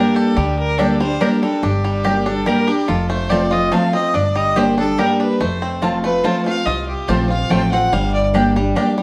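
Bluegrass in a haunting, lonesome 3/4, cut from a longer piece, with a clear, earthy fiddle up front carrying the melody alongside a bright, twangy fingerpicked banjo, both touched by plate reverb and the fiddle also by tape echo. A warm dreadnought guitar, also up front, picks the accompaniment over the Gm and F chords, while a mellow mandolin adds woody stabs and a pizzicato upright bass enters at 0.4 s. The whole band sits further back in a wet studio room, and the fiddle drops out at 8.3 s.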